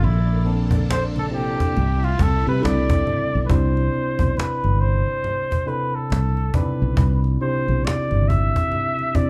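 The recording sits in a moderate large-studio reverb, with the band heard playing live together in one room. This brief excerpt of smooth, sensual neo-soul R&B moves at a slow 69 BPM in 4/4 with a swung sixteenth-note feel in C major. A clear, punchy flugelhorn carries the melody with vibrato and a vintage pop character, soloing over the opening 3.5 seconds as the chords move from Bbmaj9 to C6 before settling on Cmaj9. Beneath it, a worn, slightly out-of-tune tine electric piano with phaser supplies clean accompaniment, while a shimmering, sawtooth string-machine violin pad holds soft-attack chords with ensemble chorus until 3.5 seconds. The fingered electric bass sits up front, round, dark and foam-muted, anchoring the low end. A snappy, close cajon struck with hard hands drives the groove, and very quiet, bright, damped congas with a saturated, compressed edge join at 0.7 seconds.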